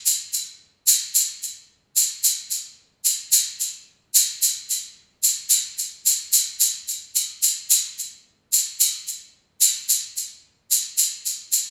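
Wistful and melancholic, this short bossa nova fragment moves at 110 BPM in a straight 4/4, cut from a longer piece. A lone egg shaker carries the whole passage, entering at 0.1 seconds and playing through to 11.7 seconds. Its grainy, bright acoustic sound sits up front in the mix, yet it carries a distant quality, as if heard across a large room. The passage shifts into a second section at 4.4 seconds, with the shaker continuing as the sole voice. Light reverb and a studio ambience surround it, lending the spare percussion a gentle sense of space.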